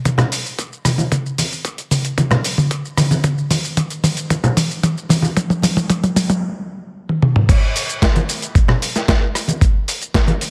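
A straight 4/4 nu-disco groove at 113 BPM builds with drum fills from the start. A gritty, overdriven electronic kick with a thumpy, high-passed punch sits up front beside a compressed, sampler-style dusty soul kit of crash, hi-hat, rim click, shaker, medium-tuned snare and toms, while vintage, band-limited acoustic congas fill in underneath. After a stop at 6.4 seconds and a final fill, the drop lands at 7.5 seconds with a cosmic, sensual feel in a light digital ambience.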